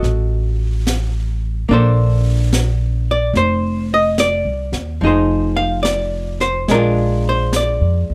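A 66% swing on the eighth notes at 72 BPM in 4/4 carries this tender, romantic jazz ballad in Bb major, cut from a longer piece, where a dark, clean, picked hollow-body archtop guitar sits up front beside a woody, growly pizzicato upright bass, while a brushed drum kit with a high-tuned snare and hi-hat stays further back in a close, dry, detailed sound as the 8.1 seconds move from F7b9 through Bbmaj9 and Fm7 to Bb7.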